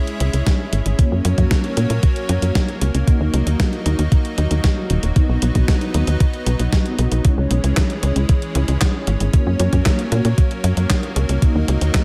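Driven by a thumpy, up-front electronic kick at 115 BPM in a straight 4/4, this melodramatic, bittersweet italo disco excerpt, cut from a longer piece, rides on a clean 12-bit drum machine whose fat snare, handclaps and hi-hat carry gated reverb, while a tight, punchy sawtooth-and-square sequencer bass with ring modulation and a plucked filter drives from 0.2 seconds. A lush, detuned unison pad with chorus holds bright sustained chords from the start, and from 1.0 seconds a mellow, round synth brass adds dark stabs with chorus and delay in the background. The chords cycle through C#m, F#, D#m and B in a dry, close-sounding mix.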